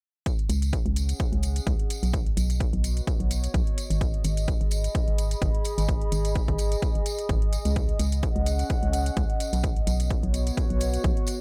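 Piano house at 128 BPM with a light 16th-note swing, this bittersweet, soulful passage moves from B to G#m7 at 3.8 seconds and back to B at 7.8 seconds. A punchy, tape-warm analog kick sits up front beside a dark, hollow, organ-like FM bass with fast, decaying notes, sidechain pumping and a filter sweep. Around them, layered metallic hi-hats and a ringing, close, dry tambourine sit low, while a nostalgic, lo-fi, warbling pad fades in with chorus, reverb and pumping of its own, all inside a digital ambience.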